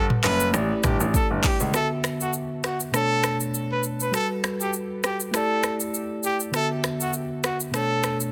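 Breezy and joyful, this short afrobeats excerpt moves in four with a lightly swung sixteenth-note feel. A clear, close-miked trumpet carries the pop-style solo melody, its vibrato and scooped notes trailed by tape echo. Beside it, a worn, slightly out-of-tune tine electric piano supplies clean, direct chords through a Gmaj9, A7sus4, D69 and Bm9 cycle. A polished grand piano holds down the bass with short-sustained low notes until 1.7 s, when it drops out as the second section begins. The electronic, produced drum kit sits up front with a deep kick, dark hi-hats, handclaps, finger snaps, rim clicks, shaker and toms, and soft clipping colours its snare. Light reverb surrounds a dense, heavily limited modern master.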